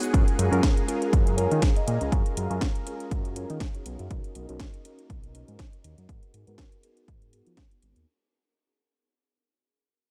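Filtered disco house with a joyful, feel-good lift and a swung groove, cut from a longer track and fading out across its 8 seconds. A barky, reedy electric piano with light overdrive, phaser and vintage 12-bit sampler grit plays accompaniment over lush, mellow string-machine chords with ensemble chorus and a slow attack, while a fat, detuned sawtooth bass with tube saturation sits up front under a filter sweep; all three are low-pass filtered and pump with sidechain. A punchy electronic kick and a house kit of cracking snare, metallic hats and shaker share a tape-toned, small-room sound, and light reverb and a further filter sweep run throughout.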